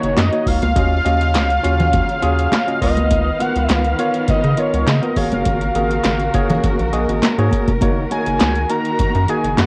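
Feel-good and smooth, this early-eighties boogie funk excerpt in F# major moves at 102 BPM, with a fat, detuned sawtooth analog lead carrying the melody over a worn, slightly out-of-tune tine electric piano, lush bowed studio strings with vibrato and portamento, an up-front rubbery, hollow square bass, and an electro analog drum machine with deep kick, punchy snare, metallic hats and handclaps, while bright, high-tuned congas enter in the background at 0.2 s, all wrapped in light digital reverb and the hazy character of a home cassette recording.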